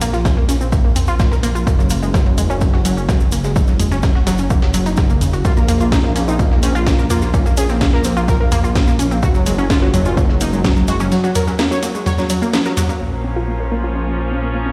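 Melodic techno with a dramatic, melancholic mood, where a punchy overdriven kick and a cracking, layered techno kit drive beneath a menacing detuned saw bass and warbling cassette-tinged pluck arpeggios, joined at 5.4 seconds by a fat, brassy analog synth lead, while a gritty sampler-style breakbeat kit and a grainy egg shaker sit in the background, before a dark, intimate string section takes up sustained Bbm chords at 13.0 seconds, all heard through the stone-room reverb of a big sound system in a bare room.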